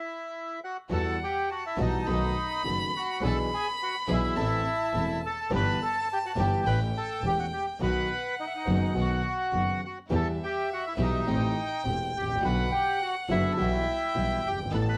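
Moderate studio reverb frames this tense, dramatic tango, with a reedy, band-limited bandoneon set up front. The bandoneon plays alone for the first 0.9 seconds before the other parts enter together. In E harmonic minor at 104 BPM in 4/4, the feel is rubato and pushes through chords such as Emadd9, B7, Am and A7. The bandoneon carries the melody while a single violin adds an expressive second line, bowed with vibrato, soft attacks and portamento. A dark, mellow concert grand piano accompanies with deep bass and audible action noise. A bowed double bass, biting and nasal with an airy bow, anchors the low end, and a very quiet, lush string section adds distant stabs until the cut-off at 15.0 seconds.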